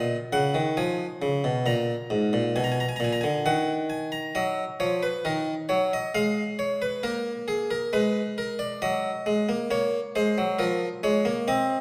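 A round, plucked Flemish-style harpsichord on one set of strings sits up front and plays alone through this contemplative yet driving baroque-style two-part invention at 67 BPM in 3/4, settling into Eb minor from 4.3 s as diminished and dominant-seventh harmonies push the line forward, all cut from a longer piece and bathed in a wet recital-hall reverb.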